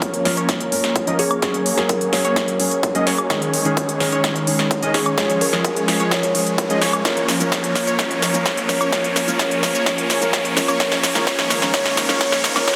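Anthemic and euphoric, this festival progressive house build-up sets a woody, ringing kalimba melody with delay, entering at 0.3 s, over a pumping, filter-swept supersaw riff, a background grand piano that also pumps, a lush, thick pad, a very quiet plucky lead arpeggio and a faint riser from 2.6 s, while an up-front big-room kit of punchy snare, crisp hats, shaker and woodblock plays a fill above a background electronic kick, bathed in huge ambient reverb and a dense, heavily limited master.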